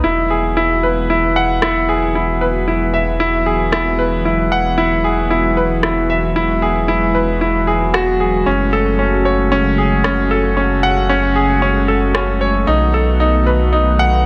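Hopeful and tender, this piano and strings electronica piece sets a bright grand piano riff up front, with a short sustain shaped by a low-pass filter and tape echo, over a lush, detuned unison pad with chorus holding sustained chords and a round analog bass with tube saturation, while an electronic rim click sits in the background from 1.6 to 12.3 seconds, all in a moderate echo chamber reverb as the harmony moves from Eadd9 to F#madd9 and B7.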